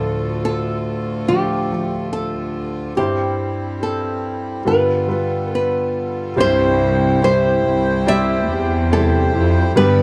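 Hopeful and heartfelt, this pop ballad excerpt opens with a small, fingerpicked nylon-string guitar carrying the melody over an intimate concert grand piano, whose deep bass and audible action noise come through, and a reedy, breathing hand-pumped harmonium holding sustained chords through Dm, C/G and G7. At 6.4 s the harmony settles on C as a lush, bowed cello section enters up front on the bass line, dark-toned with vibrato and portamento, while a steel-string acoustic guitar adds fingerpicked arpeggios in the background. The band plays live together in one room, wrapped in a moderate large studio reverb.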